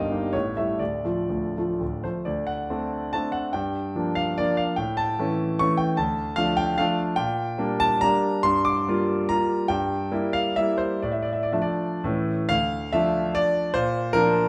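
A triple-time dance in 3/4 with dotted rhythms and a free, rubato feel that drifts between 110 and 161 BPM, this brief romantic classical passage in D minor sounds wistful and capricious. A solo concert grand piano, clear and up front with a deep bass, spans the low register up to the treble and moves through chords such as A7, Dm, Gm7 and Edim/G before a new section arrives at 12.5 seconds. The piano sits in a wet, large studio reverb that lends the playing a natural sense of space, and the clip is cut from a longer piece.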